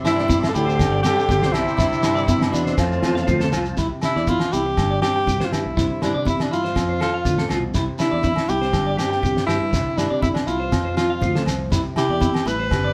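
A carefree, joyful highlife guitar band excerpt in C major at 121 BPM opens with fingerpicked nylon-string guitar, ringing agogo bells, bright high-tuned congas, a round fingered bass, clean picked arpeggios on semi-hollow electric guitar and a tonewheel organ with key click and slow rotary sway that drops out at 3.8 seconds, as a cloth-damped drum kit with a fat snare, a grainy shekere and a clear, punchy alto saxophone melody join at 0.1 seconds alongside a brilliant, scooped trombone second line that stops at 3.5 seconds, all in a live-room sound over a Cadd9, Gsus4 and F progression.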